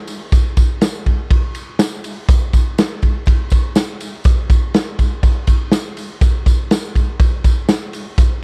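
A raw garage drum kit opens the clip at 0.1 seconds, its punchy kick, medium-tuned snare, hi-hat and ride cymbal sounding gritty and saturated, with a rolled-off top and placed up front. From that same moment, a jingly tambourine sits distant in the background, carrying its own large-room glow. This breezy, youthful indie pop groove moves at 122 BPM in a straight 4/4, captured in a dry, close 1970s-style small-room recording that runs to 8.3 seconds as part of a longer piece.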